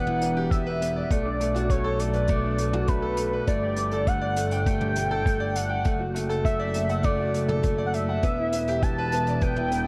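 Set in a small room with a light touch of reverb, this cinematic, hypnotic piece of piano and strings electronica is cut from a longer work and moves in a straight four-beat feel. A velvety synth lead carries the melody, its detuned sawtooth and triangle tones in unison, with a fast attack, sustained notes, vibrato and a chorus effect. A clear, woody upright piano sits up front with a vintage character and long sustain, playing a riff through a delay. Beneath them, a rich, distant section of bowed double basses holds the low end with light vibrato and an even tone, pumped by sidechain compression. A dark, smooth brush kit on hi-hat and toms enters at 0.1 seconds, with a rolled-off top, while a muffled, thumpy, pitched-down electronic kick joins at 0.5 seconds and sits above the brushes in level. The harmony moves through Em7, Bm7, Gsus2 and D/F# before returning to Em7.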